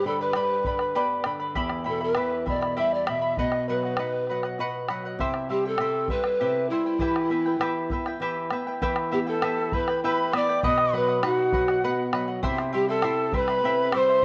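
A mellow, hollow wooden pan flute with vibrato and a soft attack carries the melody up front from the start of this festive yet wistful Andean folk excerpt in E minor, a straight 3/4 at 99 BPM, over a shimmering fingerpicked charango with double strings, a dark, small nylon-string guitar with audible finger squeak and a deep, dry bombo, until at 9.1 s a breathy cane quena with tongued chiff adds a close-miked, slightly unsteady second line with slapback echo, the ensemble sitting in a moderate plate reverb.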